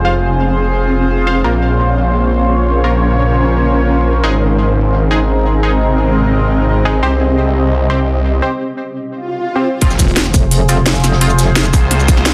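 This excerpt from a longer dark technical drum and bass track opens with a snarling, growling distorted saw bass pushed up front, pumping against sidechain under a sweeping resonant pad, nasal band-passed chord stabs with chorus and digital delay, and a blurred granular cloud pad. At 172 BPM in F minor, the harmony moves through Fm, Bbm, Ab and Cm, giving the opening stretch a mechanical, brooding pull as the pad's filter swell and the cloud texture keep evolving. A break arrives at 8.4 seconds, and a background electronic swell builds from 9.2 seconds into the drop at 9.8 seconds. There the tight electronic kick, a drum and bass kit with cracking snare, crisp hats and shaker, and a very quiet, gritty breakbeat kit with a high-tuned snare all enter together, joined at 10.3 seconds by a metallic, wobbling FM bass with chorus. The dense, heavily limited master and light reverb keep the drop hard-hitting and claustrophobic.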